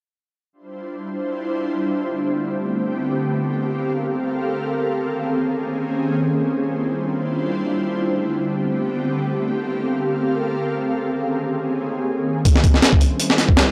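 A compressed, sampler-style breakbeat kit with a thumpy kick, medium-tuned snare and hi-hat sits up front in a small room only from 12.5 to 13.7 seconds, giving this dark, nostalgic drum and bass fragment in free time its brief, gritty cassette-tape bite under a light reverb.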